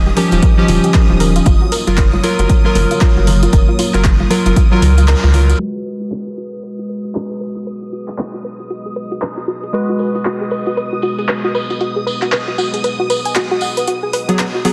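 Deep house with a moody, swung groove, cut from a longer piece. A dark, detuned analog pad holds sustained chords under a shimmering string-machine violin layer, while a soft, mellow pluck plays arpeggios through chorus and dub echo, and square-wave, wave-folded analog keys add stabs with the same echo. Up front, an overdriven electronic kick and a deep, round analog bass anchor the opening, with sidechain pumping on the bass, alongside handclaps and hi-hats from a punchy drum machine, very quiet thick-skinned congas and a jingly tambourine in the background. After a band accent at 5.1 seconds, the kick has already dropped away and the bass and congas end, and from 5.6 seconds a filter sweep runs over the drums, pad and pluck as the chords change. The master is dense and heavily limited, with light reverb, a low-pass filter and vinyl crackle lending it a vintage haze.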